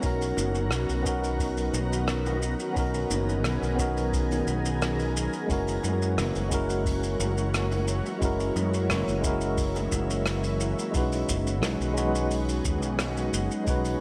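A moderate concert-hall reverb gives this blissful, smooth sunset chillout cut an airy, spacious sound, taken from a longer piece at 88 BPM in a straight 4/4 in B major. Up front, a clean tine electric piano plays accompaniment through its built-in speakers, trailed by a digital delay, while a fingered electric bass sits beside it with a warm, direct-and-amped tone. Beneath them, a shimmering ambient pad holds ethereal, detuned sine chords with a slow attack, octave-up shimmer, granular texture, chorus and a long, mellow release. The rhythm pairs a deep, overdriven analog electronic kick, set in the background with a large-room sound, and a vintage brush kit whose hi-hat, rim click and shaker come across warm and rolled-off. Very quiet, low-tuned bongos played with soft hands add round, distant color from 0.4 to 10.1 seconds. The harmony moves from Bmaj7 to F#7 and settles on B6 at 10.9 seconds as a new section begins.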